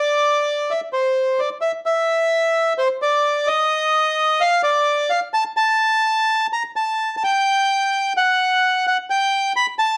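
A lone bandoneon opens this melancholic, dramatic tango fragment, its reedy voice sitting up front from the first moment to the end at 10.0 s. The playing moves with a rubato feel over a 4/4 metre at 129 BPM, staying within an upper register from C5 to B5. A slapback echo trails the bandoneon, adding a short, doubled edge to its tone. Moderate studio reverb with a 0.8-second decay gives the solo a modest sense of space. The production leans dark and warm, suiting the brooding character of this brief passage taken from a longer piece.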